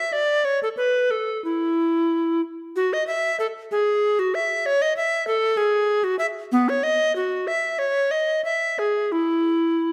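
Serene and dance-like, this short excerpt from a longer baroque-style fantasia in E major finds a solo bass recorder alone for 9.9 seconds, moving in 3/4 at around 94 BPM with uneven, rubato beats, its airy, woody tone full of tongued chiff and vibrato, close-miked and up front within a moderate recital-hall reverb.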